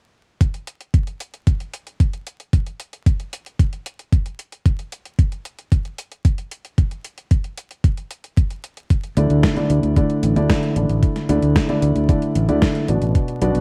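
Romantic and playful, this italo disco excerpt in D major at 113 BPM opens with a gritty, thumpy overdriven electronic kick up front and a gated 80s digital drum machine supplying hi-hat and gated-reverb snare, before a dark, boxy grand piano with tape echo plays stabs on a Dsus2 chord and a growly, overdriven fingered electric bass joins at 9.2 seconds, all in a dry, close 1970s-style studio sound with vinyl crackle.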